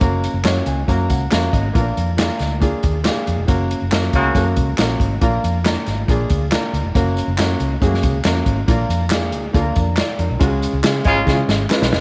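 An upright piano with a woody, intimate tone and audible action noise opens this urgent, passionate piece of uptempo 1960s-style soul at 139 BPM, alongside a dark, round, foam-muted electric bass and a punchy, up-front big-band drum kit on hi-hat, kick and snare, with the piano adding a fill at 0.4 seconds. Tambourine and handclaps sit close and dry in the background while the band hits accents, and a tight, vintage horn section bursts in briefly at 4.1 seconds and again near the end. A drum fill at 11.3 seconds closes this cut from a longer piece, which moves between Gb, Bb and Db chords under light reverb and is tuned to A4 = 435 Hz.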